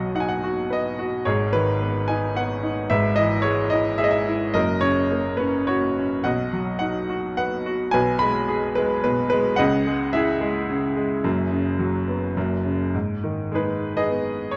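A bright baby grand piano plays alone from the first moment, a lyrical classical solo in B major at 108 BPM in 3/4, moving with a rubato feel through a moody, bittersweet progression that passes from B and G#m to C#m9/G#, F# and an F#sus4. The brilliant, natural-sounding piano sits up front with long sustain, ranging from F#1 to B5 inside a moderate recital hall reverb and a dark production. At 12.9 s a new section opens on G#m before this cut from a longer piece ends at 14.6 s.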